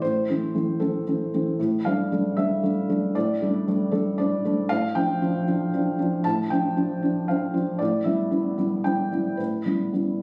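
A felt-muted upright piano opens alone and carries this short fragment of a neoclassical minimalist piece, playing solo from 0.0 to 10.2 s. The mood is melancholic and wistful, set in a rubato 3/4 at around 116 BPM, with the instrument tuned to A4 = 439 Hz. The piano's tone is soft and mellow, its thick felt giving an intimate, warm character, and it sits up front across a range from A2 to A5 with a slapback echo trailing its notes. The harmony moves from A minor through Gsus2/A, Dm7/A and Em/A, all over a steady A in the bass. The sound carries the feel of a phone recording made in a small room, with moderate, short room reverb and added studio reverb around the instrument.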